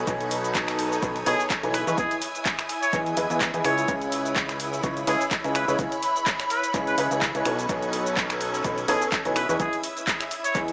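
Energetic, soulful piano house at 126 BPM in C# minor with a 16th-note swing, where an up-front woody upright piano riff with analog delay and a clear trumpet melody entering at 1.3 seconds ride over a fat, saturated analog bass, shimmering string machine chords and smooth background strings, all pumping alongside the piano, plus a punchy electronic kick, a tape-warm drum machine of snaps, handclaps, hi-hat and shaker, and a very quiet gritty sampler kit, moving through B13, Emaj7 and C#m9 chords in an echo-heavy spring-reverb mix with a small-speaker sound.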